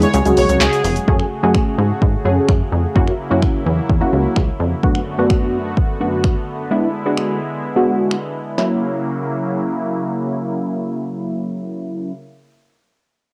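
A funky, detuned polysynth comp with a dark, filter-plucked edge and chorus sits up front through all 12.1 seconds of this energetic, bittersweet dance-pop excerpt at 128 BPM, over a smooth pad with tremolo and sidechain pumping, while a punchy analog drum machine of kick, snare, handclaps, finger snaps, hi-hat and shaker runs until 8.7 s. An airy, unison supersaw melody and a grainy, very quiet egg shaker sound only in the opening drop, where the kick is muted, and a plucky, wave-folded bass plays with sidechain pumping until 4.7 s. The harmony moves from C#sus4 through F#madd9, F#7, Bm7/F# and E7, all carrying a tape-worn, home-cassette character under light digital reverb.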